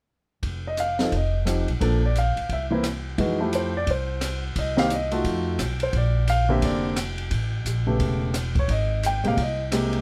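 Lightly reverberant, this excerpt from a longer piece captures a jazz piano trio in a playful, warm mood, swinging briskly at 175 BPM in 4/4 and F major. The upright bass and drum kit begin together at 0.4 seconds, and the grand piano joins at 0.7 seconds to carry the melody between C3 and G5. The plucked bass sits up front with a woody, thumpy tone and steel strings. The kit, heard in a small room, pairs dark cymbals and a high-tuned snare with a boomy kick, adding hi-hat, ride and rim clicks. The piano sounds intimate and natural, with its action noise audible up close, and from 3.2 seconds a longer passage moves through richer harmony such as Fmaj9, F7b9, Bb69 and Abmaj9.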